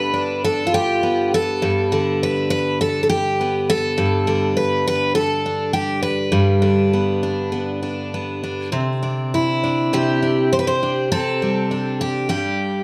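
Folk piece for solo fingerstyle acoustic guitar in C major at 102 BPM in a straight 4/4, with a pastoral, peaceful mood, cut from a longer piece. A picked twelve-string acoustic guitar plays alone throughout, sitting up front with a bright, shimmering, octave-doubled jumbo tone from fresh strings, audible finger squeak and slapback echo, moving from Gadd9 to Cadd9 at 8.7 seconds. The recording uses close, detailed microphones and light reverb.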